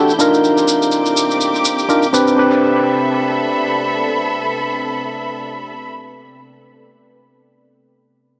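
Deep house at 124 BPM with a swung, late-night, hypnotic feel, this excerpt moves from Cm11 to Am11 at 2.4 seconds under a moderate plate reverb and an echo-heavy mix. A hollow, up-front organ stab with a fast attack and dub echo carries a filter sweep through the opening, over a deep, full-bodied ambient pad with chorus, veiled con sordino strings and a silky string machine in the background. Grainy, mellow maracas with dub echo join the string machine until both stop at 2.4 seconds, leaving the stab, pad and muted strings.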